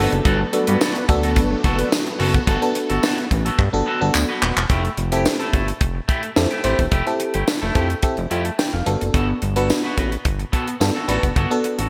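Early-eighties boogie funk at 108 BPM, smooth and danceable, built on a tight funk drum kit with high-tuned snare, handclaps and gated reverb, a fat, wave-folded analog bass sitting up front, and a picked, twangy electric guitar riff at the edge of break-up washed in lush chorus. A glassy FM electric piano with bell-like attack opens with a fill and carries the accompaniment, while a swirling, warbling phased string machine holds background chords until 4.7 seconds, and a round, dark synth brass line briefly appears from 0.5 seconds. A jingly tambourine sits low in the bright digital mix over a Gmaj9 to Fmaj9 progression, with a drum fill leading into the second section in this excerpt cut from a longer piece.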